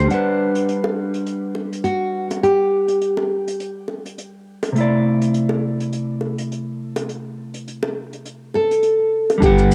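Soaked in a wet spring reverb and the soft haze of a home cassette recording, this sunny sunset chillout fragment moves at 103 BPM in G major with a gentle swing on the sixteenths. A dark, clean electric guitar fingers Gmaj7 and C69 chords through tape and analog delay, over brushed hi-hat and shaker and tight, high-tuned bongos. A full-bodied, fingerpicked nylon-string guitar, also colored by tape and delay, carries the melody with audible finger squeak, stopping at 4.4 seconds and returning at 8.6; a growly fretless bass, heard briefly at the very start, returns alongside a punchy, overdriven electronic kick at 9.4 seconds.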